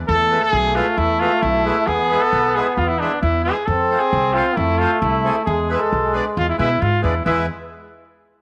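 A brisk, straight 2/4 pulse at 134 BPM drives this festive yet soulful klezmer excerpt in E phrygian dominant, tuned to A4 = 442 Hz. A pizzicato upright bass lays the foundation with a woody, thumpy, steel-stringed tone. Up front, a warm, distant cornet carries the jazz-inflected melody. Beneath it, a roomy trombone plays a second line in jazz style, with vibrato, soft attacks and scooped notes. A reedy, full and airy accordion enters at 0.3 s to fill out the accompaniment, while the harmony moves from E to F at 3.7 s and back to E at 5.5 s. A wet echo chamber reverb and studio ambience give the whole group a spacious, resonant setting.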